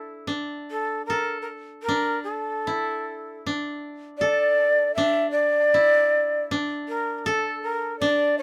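Japanese traditional chamber music, austere and calm, drifts in a free rubato across this short fragment cut from a longer piece. A breathy bamboo shakuhachi carries the melody up front, its straight tone marked by a crisp, chiffy attack and expressive phrasing, while a bright, woody koto played with fingerpicks sits lower in the mix as a second line throughout the 8.4 seconds. Close, detailed microphones and light reverb keep the sound intimate and clear.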